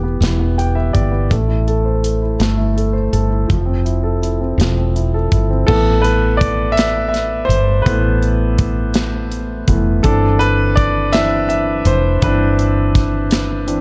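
An intimate concert grand piano with audible action noise, deep bass and long sustain accompanies this dramatic, melancholic six-eight pop ballad in A minor at 55 BPM, adding a fill at 0.2 s and taking a solo from 5.7 s over chords moving from Em through Am and Fmaj7 to Asus2, while a round, hollow-body fretless electric bass sits up front and a punchy, mid-forward studio drum kit with crash, hi-hat, kick and snare joins at 0.2 s, all in a dark small-room production.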